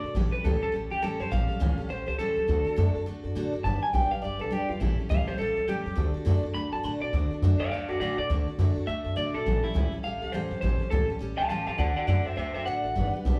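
A twangy, slightly broken-up electric guitar through a small old amp opens with a clean solo over thumpy gut-string upright bass and a full-bodied, finger-squeaking dreadnought acoustic guitar, all heard from the start of this upbeat, rollicking rockabilly fragment in D major at a swung 206 BPM. The solo runs until 7.1 seconds, where the piece moves into a new section, while the acoustic picks out bright accompaniment and the woody, dark pizzicato bass sits up front beside the lo-fi lead. The trio sounds like a band playing live in one room, bathed in a wet, large studio reverb, as the changes circle through A7, D and G.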